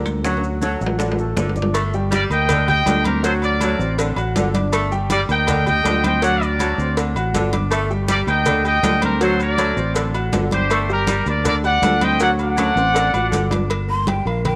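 A straight, danceable 4/4 salsa groove at 160 BPM in G harmonic minor is driven by a round, up-front fingered electric bass, background congas, close, dry bongos and cowbell, ringing timbales and agogo bells, and grainy maracas, with a dark, mellow grand piano and a smooth, warm saxophone section underneath, while a punchy, vintage-toned trumpet section takes the passionate melody from 2.1 seconds and a breathy, hollow, distant jazz flute briefly appears at 13.9 seconds over light reverb in this cut from a longer piece.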